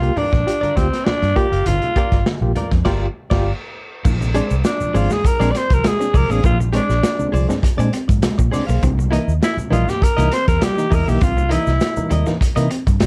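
A growling alto saxophone leads this driving, hypnotic funk excerpt, up front with a breathy, raspy vibrato and a slapback echo, carrying the melody until 12.1 seconds. Underneath, a crunchy breakbeat kit sounds saturated and gritty with dark cymbals, a tight kick and a rolled-off top, while a foam-muted fingered bass adds a round, amped low end. A reedy electric piano plays overdriven stabs through its built-in speakers with fast tremolo, and a bright, direct-recorded clean guitar adds compressed, picked accompaniment bathed in lush chorus. Low-tuned congas sit distant and very quiet in a large room, and the band hits an accent together before a new section begins at 4.1 seconds. There a slightly broken-up, twangy guitar riff with tremolo joins in the background alongside a grainy egg shaker, as the harmony moves from Gm7 to Bb9 and then C7#9 at 8.8 seconds, all within a dark production with light reverb.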